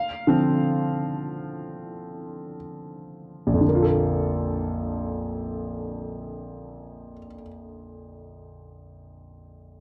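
A clear concert grand piano carries this tender, emotional pop fragment, its tone worn, with a deep bass, a natural character and a short sustain. Sitting up front in a dry, close recording with a 1970s studio feel, the piano is framed by the ambience of a small room. It plays alone as an accompaniment part, ranging from Bb1 to F5 across the 9.8 seconds cut from a longer piece. The opening passage rests on a Dm7 chord and slows down until 3.6 seconds, when the music moves into a new section on Bbmaj7. The result feels tender and emotional, like a moment lifted from a longer song.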